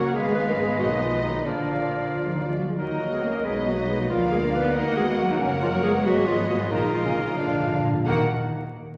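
Stormy and restless, this brief cut from a quick classical-period symphonic movement in Eb minor moves at 91 BPM in a straight 6/8: a distant, lush violin section carries the melody over a second violin line, airy flutes, a soft-edged oboe and a dark, present clarinet, while bassoon, a focused viola section and very quiet French horn chords fill the middle, expressive cellos and double basses anchor the bass, and round, up-front timpani enter at 7.4 s for a fill before the close on Ebm, all set in a wet concert hall with vinyl crackle.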